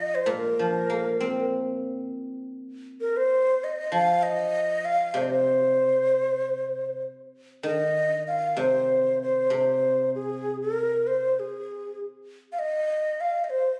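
Graceful and tender, this rubato Chinese traditional chamber piece sets an up-front, breathy bamboo xiao melody with vibrato and tongued notes over ringing, silvery guzheng accompaniment played with fingerpicks, shifting into a new section at 7.6 seconds before the guzheng stops at 11.4 seconds and the xiao carries on alone to 13.8 seconds, all captured on a phone in a recital hall with moderate reverb as a cut from a longer piece.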